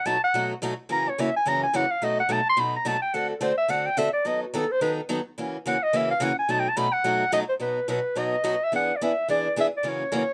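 Jazz with a fiery, swinging feel, this short cut from a longer piece puts a breathy, up-front clarinet soloing with vibrato and scooped notes through its first 7.6 seconds over the bright, boxy picked accompaniment of a parlour steel-string acoustic guitar, all captured by close, detailed microphones in light reverb.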